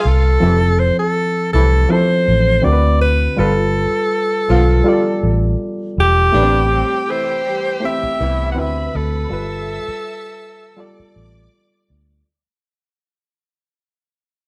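A clear alto saxophone with jazz vibrato carries the melody up front in this smooth, bittersweet soul passage at 81 BPM, over a round, punchy muted electric bass, a barky, lightly overdriven electric piano and mellow horn-section stabs that stop at 8.9 s, while a lush bowed string section comes back in at 6.3 s as the whole band fades out in a moderate live-room reverb.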